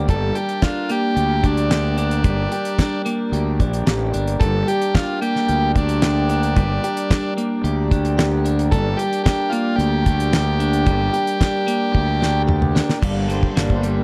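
A damped 70s drum kit sits up front with a fat snare, tight kick and dark cymbals, driving this hypnotic, dark psychedelic rock excerpt in G minor at 111 BPM, steadily in 4/4 and straight alongside a punchy, fuzz-overdriven fingered electric bass. A clean, scooped electric guitar plays a riff through a phaser while a buzzy vintage combo organ carries the melody through analog delay, and a reedy, breathing pedal harmonium holds sustained chords in the background within a light reverb. After a drum fill at 11.9 seconds, the harmonium takes a short solo from 13.0 seconds as a shimmering, softly plucked tanpura drone enters beneath it.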